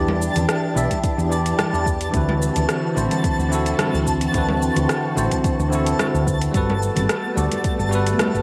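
Riding a lightly swung 109 BPM groove of metallic hi-hat, rim click and shaker from a smooth R&B kit, with ringing background congas and a soft electronic kick entering at 0.9 s, this relaxed, smooth sunset chillout snippet from a longer piece sets a bell-like, up-front tine electric piano with tape echo over a dark, round fretless bass, silky string-machine chords drifting through phaser and ensemble chorus, and a twinkling granular shimmer, all moving from Em7 through D13 to Gmaj9 in a moderate booth ambience with the character of a home cassette recording.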